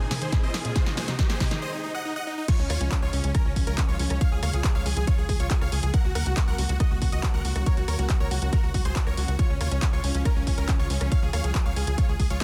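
Uplifting trance with a euphoric, soaring mood, heard in a short cut from a longer piece that opens on a build-up. A huge, detuned supersaw lead carries the melody over a silky analog string pad, both pumping against the sidechain, while a lush unison pluck plays filter-swept arpeggios and a riser climbs in the background. A punchy analog drum machine and a layered, up-front electronic kick come in almost at once, and their drum fill runs until 1.6 s, when a brief break follows. At 2.5 s the drop arrives: the kick anchors the drum machine's crash, handclaps, hi-hat, rim click and punchy snare with soft clipping, and a tight, nasal sequencer bass with tube saturation drives underneath. A very quiet, airy supersaw stab adds a second line with an evolving noise layer, and the lead's delay trails behind its bright, compressed tone. The harmony opens on Abadd9 over a Db bass, then settles on Db, moving to Gb over a Db bass and back, in a dense, heavily limited modern master with little reverb.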